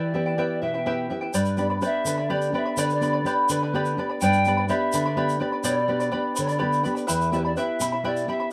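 A moderate studio reverb surrounds this brief, wistful and earthy Andean folk passage in 6/8 at 84 BPM, cut from a longer piece, where a distant wooden pan flute carries the melody with a pure tone, vibrato and tongued, chiffy attacks. Up front, a shimmering, bright charango with double strings and a full-bodied, deep classical nylon-string guitar fingerpick the accompaniment through Em and G, returning to Em at 7.1 seconds. A grainy, band-limited tube shaker with a vintage character joins at 1.3 seconds and drops out at 8.2 seconds.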